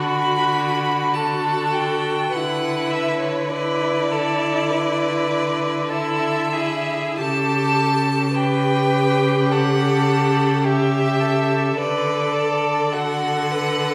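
A wet recital-hall reverb with a 1.5 s decay, as in a church or concert hall, surrounds this tender, slow romantic movement for string quartet in D major, taken at 46-54 BPM in 4/4 with a rubato feel. Four rich, bowed voices with vibrato share the excerpt: the first violin sings a smooth, even melody from C#5 to B5 that sounds distant yet up front, the second violin shapes an expressive second line with portamento, the viola gives focused accompaniment, and the cello sits up front on a bass between C#3 and D3. The harmony moves from D through E5/D and A7/C# before returning to D at 11.8 s.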